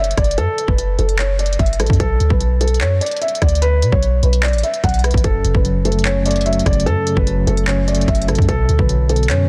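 Menacing and brooding, this half-time trap hip hop excerpt at 148 BPM in F# minor sets a dark, felt-muted upright piano melody with digital delay over a deep, boomy 808-style bass and an up-front trap kit of hard-clipped kick, crisp hats, handclaps and rim clicks carrying vintage 12-bit sampler grit, while a clean tine electric piano with medium tremolo enters at 5.2 s through a combo amp, all within a dry, dense, heavily limited master.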